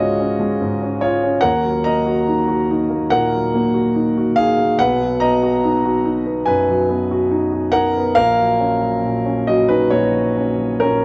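A concert grand piano, up front with a deep, open bass and light reverb, plays alone through this melancholic, intimate neoclassical minimalist fragment in Eb minor, moving with a rubato feel around 71 BPM over chords of Db, Ebm, B and Gb/Bb across 11.0 seconds cut from a longer piece.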